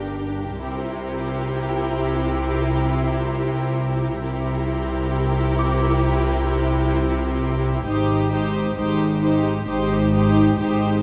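Eerie and uneasy, this short cut from a longer suspense film score moves at a slow 66 BPM in a straight 4/4. The two violin sections play sul tasto with a soft, floating attack: one carries a faint melody between Bb4 and C5 that sits in the background, while the other holds a second line on G4. Beneath them the viola section adds a dark, woody accompaniment with vibrato and a smooth top, and the cello section supplies a rich, pure bass line. The double bass section doubles that foundation an octave lower, sounding distant yet placed up front. A worn celesta, bell-like and slightly out of tune, adds a delicate, sweet texture in the background from E5 to D6. The harmony moves from Gm to C7 almost at once, then settles on Abmaj7 at 7.9 seconds, all wrapped in a moderate scoring stage reverb.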